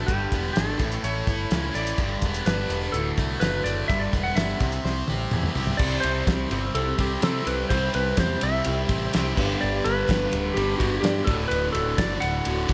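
A twangy, clean lap steel guitar carries the slide melody over two bright overdriven guitar riffs, one crunchy with phaser in the background, the other with slapback echo, plus warm picked bass and a cloth-damped, thuddy drum kit in this driving, sunny classic rock excerpt at 126 BPM. A very quiet jingly tambourine joins at 2.2 seconds, and a shouting, lightly overdriven tonewheel organ on slow rotary enters at 5.5 seconds, just before a drum fill leads to a reedy electric piano with fast tremolo at 5.8 seconds, all set in a lush hall for a big arena sound.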